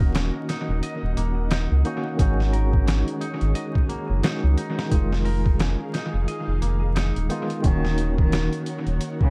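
A deep, round analog bass sits up front alongside a gritty, thumpy, pitched-down sampler-style drum kit with small room ambience, setting a hypnotic, smoky trip hop groove at 88 BPM in Eb minor with a swung sixteenth feel. Over it, a bright, clean tine electric piano with tremolo and tape echo carries the chords from Ebm7 through Ab7sus4 and Fm7b5. A mellow string-machine cello pad with ensemble chorus sits in the background, while a hollow-bodied electric guitar picks dub-echoed arpeggios until 7.6 s, when a distant, reedy bowed cello takes up a short melody at 7.7 s, all wrapped in an echo-heavy mix with vinyl crackle.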